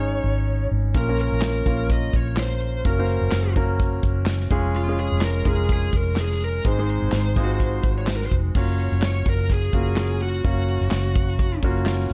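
Opening together, a clear, polished concert grand piano, a round, foam-muted vintage electric bass sitting up front, and a smooth, overdriven, picked lead guitar carrying the melody set up this hopeful, anthemic piano-driven pop excerpt at 126 BPM with a light swing, before a small-room country drum kit with a punchy kick, dark cymbals, handclaps and crash joins at 0.9 s, all wrapped in a warm, lightly reverberant production.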